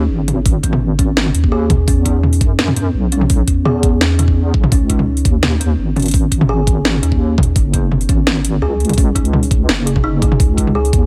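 A gritty, band-limited kalimba opens the piece, its woody, hollow arpeggios ringing through a digital delay alongside a deep, wobbling bass that carries a chorus effect. This tense yet spacious half-time drum and bass excerpt moves at 169 BPM in C# minor, cut from a longer piece. The drum kit enters at 0.3 seconds with a cracking snare, metallic hi-hats and toms, and an up-front electronic kick joins at 0.5 seconds with a knocking, tape-tinged punch, both sounding layered and re-recorded in a small room. The dark, detuned bass blends square and sine tones with a fast attack and compressed sustain, sitting forward in the mix beneath the mellow, vintage-flavoured plucks. The harmony circles a rootless C#sus2, moving through E5 and F#5, and the dry, close sound keeps every part intimate.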